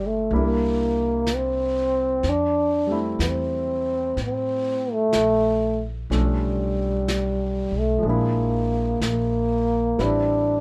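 Tender and romantic, this short jazz ballad excerpt moves at a slow 62 BPM in 4/4 with a swung eighth-note feel. A breathy trombone carries the melody up front, its mellow, whispered tone shaped by a soft attack and light vibrato, giving an intimate yet slightly distant, roomy character. A clear baby grand piano supplies accompaniment with a natural, short-sustained tone, while a pizzicato upright bass with gut strings adds a woody, thumpy low end. A vintage brush drum kit joins at 0.3 seconds, its dark, smooth brushed snare and hi-hat sounding as if in a small room with a rolled-off top. The harmony drifts from C7 through Fmaj7 and Bm7b5 to Bb7#11 before settling on Am9, all bathed in light reverb.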